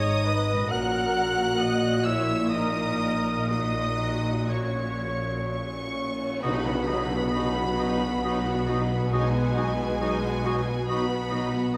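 Uplifting and moving, this cinematic film-score excerpt unfolds in a rubato 3/4 at roughly 59-69 BPM, with a clear, intense violin section carrying the melody over a very quiet, smooth second violin section, airy flutes, a solo oboe and lush violas, cellos and double basses, while a mellow, distant French horn section holds sustained chords. A very quiet concert harp rings out fingerpicked arpeggios from 0.5 s, a dark, close cymbal swell and tam-tam sit underneath from 3.5 s, and a mellow solo clarinet joins in the background at 6.4 s as the harmony moves from G#m7 and F#/A# to B with an accent from the ensemble. The whole orchestra sits in a wet scoring-stage reverb.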